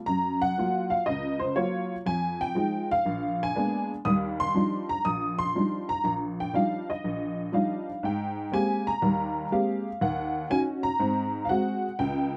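Swinging and sophisticated, this solo jazz excerpt at 121 BPM in 4/4 features a lone honky-tonk upright piano, detuned, jangly and woody, sitting up front in a moderate studio room, moving from Eb major through Gbmaj7, Fm7 and Bb7b9 to Ebmaj9 before shifting to Ab major at 8.0 seconds with Abmaj9, Ebm7 and Ab7.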